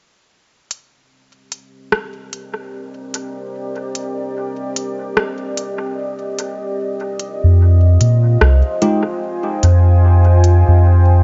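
Hazy and spacious, this ambient dub passage, cut from a longer piece, drifts at 74 BPM in C minor with a swung 16th-note feel. An electronic drum kit of smooth hi-hats and rim clicks sits up front from 0.7 seconds, with small room ambience and dub echo, while a deep, moody sawtooth pad with chorus and built-in reverb fades in, holding Cm9 before shifting to Fm9. A round, mellow sub bass with tube saturation enters at 7.4 seconds, and a clean tine electric piano adds a brief chorused stab at 8.8 seconds, all within an echo-heavy digital ambience whose top end stops at 7.7 kHz.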